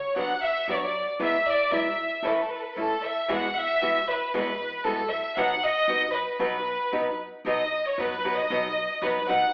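Proud and romantic, this mariachi folk excerpt in A major moves at 116 BPM in 2/4 with a rubato feel, as a rich, earthy chamber violin section carries the melody up front with light vibrato from 0.0 seconds. A bright, fingerpicked nylon-string guitar, complete with finger squeak, joins at 0.2 seconds with chords moving from Bm/F# through Eadd9 and A toward B, while a woody pizzicato upright bass sits in the background. The band plays live in one room, wrapped in wet large-studio reverb and heard through a telephone-like filter.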